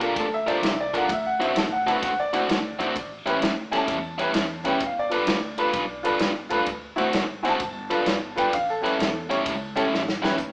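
Soulful and laid-back, this electric blues shuffle sets a biting, overdriven guitar riff and a brilliant, smooth vintage grand piano up front over a woody, thumpy upright bass and a punchy natural drum kit, the band playing live in one room with moderate studio reverb and a small-speaker sound, moving from Gm7 through D7, A7 and G7 before a drum fill at 9.9 seconds.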